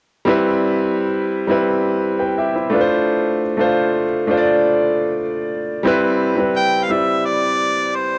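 An intimate grand piano with audible action noise and a cassette-tape tint opens at 0.3 seconds with lush Cmaj7 and F6 chords in a smooth, straight 86 BPM soul groove in C major, before a close-miked, jazz-style harmonica solo enters up front at 6.6 seconds with vibrato and scooped notes, both parts set in a moderate spring reverb on this homespun cassette recording cut from a longer piece and ending at 8.2 seconds.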